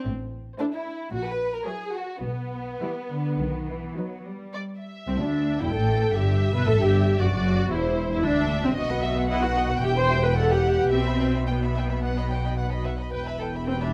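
In a flexible, rubato 4/4, this quick classical-period movement for string orchestra sounds cheerful and graceful, with every section bowed con sordino for a veiled sound. A dark violin section carries the melody from 0.6 seconds over a second violin line with soft attack, while the close, lush viola section supplies accompaniment; cellos with light vibrato and warm double basses anchor the bass from 0.1 seconds. Light reverb and detailed microphones frame this brief cut from a longer piece, which repeats its opening phrase as it goes on.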